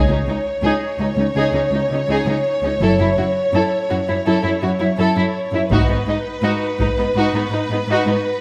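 Relentless and dramatic, this cinematic orchestral build-up at 83 BPM in G# phrygian sets an up-front, lush violin melody over a second violin line, smooth viola accompaniment, a close, smooth cello bass and a distant double bass that drops out at 5.9 s, while a band-limited, vintage-toned taiko ensemble with heavy sticks strikes in at 5.7 s, all moving through C#sus2, F#m7 and G#m7 in a moderate scoring-stage reverb.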